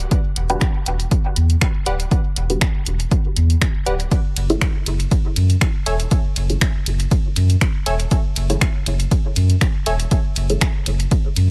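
Dub techno at 120 BPM with a light swing, cavernous and meditative, moving from Em9 to F#m9 in this short cut from a longer piece. A deep, round, soft sub bass and a punchy, overdriven electronic kick sit up front, while a layered deep house kit of finger snaps, hi-hat and ride cymbal adds overdrive and dub echo. A muted, mellow, detuned chord stab with phaser enters at 0.5 seconds, and a crisp, digital wavetable stab riff joins at 1.9 seconds, both pumping and trailing dub echo as a filter sweep moves through the synth stab in a dry mix with lossy artefacts.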